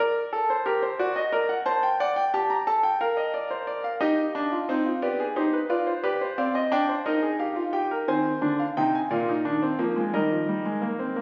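A baroque-style classical fugue in four parts for solo grand piano, this short excerpt, cut from a longer piece, moves at 59 beats per minute in a straight 6/8, with a mood that is contemplative yet driving. The concert grand sounds bright and brilliant, natural and up front, with a deep bass, spanning Bb2 to Bb5 and tuned to A4 = 439 Hz. The harmony opens in G minor and passes through D/F#, Bbadd9, Cm and a G7 before reaching Ebadd9, and a second section beginning at 8.1 seconds turns through Ab and Bb7 to settle on Eb. The piano is heard in a concert hall with a two-second reverb tail, captured on a phone in the room and given added studio reverb and compression. The clip ends at 11.2 seconds.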